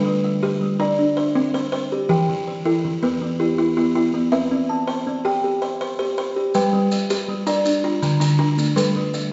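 A pair of buzzing kalimbas opens this hypnotic southern African traditional excerpt together, weaving arpeggios into an mbira-style interlocking cycle in a straight 12/8. One kalimba has a solid board and a thumbnail pluck, giving it a woody, dark edge. The other sits on a hollow box and is sounded with the fingertip, so its short, buzzing notes come across mellow and soft. Both sit up front as the harmony circles through G, C, E minor and back, touching D minor near the close. At 6.5 seconds grainy maracas join from a distance, set back in a large room. The recital hall reverb gives the whole fragment a wet bloom, with the treble gently capped.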